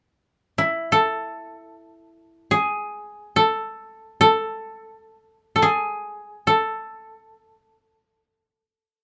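Austere and calm, this short passage of Japanese traditional music unfolds in free time, cut from a longer piece. A solo koto carries the melody, entering at 0.6 seconds and continuing through to 9.0 seconds. Played with fingerpicks, its tone is woody and dry, sitting up front in the sound. The line stays within a narrow span from E4 to A4, giving it a restrained, contemplative quality. Close, detailed microphones capture the instrument with clarity, and a light reverb lends the space a subtle sense of air.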